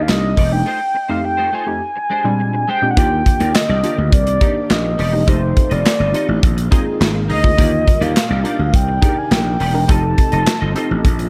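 A polished, up-front mix sits in small room ambience on this brief early-eighties boogie funk cut, funky and made for dancing in a straight 4/4 metre. A modern studio drum kit of punchy kick, medium-tuned snare, hi-hat and handclaps drives it with gated reverb, while a growly, overdriven slap bass pushes hard up front. A dark, detuned polysynth comp with a plucky filter and chorus fills the middle, and a bright, twangy clean electric guitar adds a compressed, picked riff under its own ensemble chorus. Over it all a mellow, horn-like synth lead carries the melody with round, full-bodied tone, a warbling vibrato and filter sweeps. After a break from 0.7 to 3.0 seconds, a very quiet, silky string machine enters at 3.0 seconds with slow-blooming sustained chords as the harmony moves through rich ninth, seventh and suspended chords.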